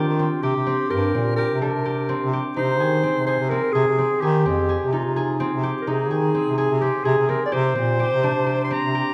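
Heard in a recital hall with a generous 1.5-second reverb, this short contemporary chamber excerpt keeps its three instruments up front. It moves in 7/8 at 254 eighth-note beats per minute with a straight feel, and the mood is restless and urgent. A breathy clarinet carries the melody between F4 and C6 in a jazz style, close-miked, with vibrato, subtone and scooped notes. Beneath it, a concert harp plays ringing, fingerpicked arpeggios between C4 and Ab4. A clear bass clarinet with a soft attack holds the bass line from F2 to Eb3 in a classical manner. The harmony moves from C7sus2 to Ab at 2.6 seconds and settles on Csus2 at 7.5 seconds, with the three instruments sounding together for the whole nine seconds or so.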